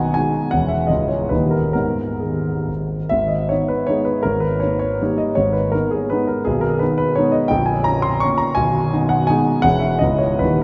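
Drenched in a long cathedral reverb that lets each note ring out through a vast, echoing space, a solo grand piano sits up front with a warm, present tone and long sustain. This short romantic dance in 3/4 and G# minor moves with dotted rhythms and a free rubato between 125 and 182 BPM, its nostalgic, capricious phrases ranging from the deep bass up to the upper treble. Cut from a longer piece, the passage runs 10.6 seconds and restates its opening section from 3.1 seconds, with harmonies circling between G# minor, C# minor and D#.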